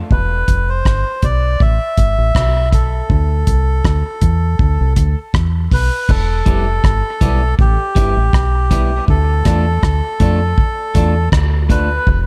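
Heavy and spacious, this dub reggae excerpt sets a reedy, breathy melodica carrying the melody through dub echo over a round, punchy fingered electric bass and an up-front, dry 70s drum kit with a tight kick, a dark crash cymbal, hi-hat and rim clicks, while a slightly broken-up electric guitar joins as accompaniment at 6.5 s with its own dub echo, set within a dark production with light reverb and studio ambience.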